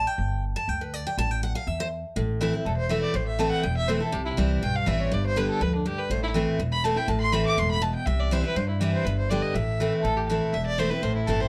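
Haunting, lonesome bluegrass in A minor at a brisk 244 BPM, cut from a longer piece, where a full-bodied picked acoustic guitar takes a short solo before a dark, woody fiddle with light vibrato and portamento carries a bowed solo from 2.7 seconds over pizzicato upright bass and the chords Am, C and G, until a rich, focused fiddle with slapback echo takes the melody at 10.5 seconds, all heard through close, detailed microphones with light reverb.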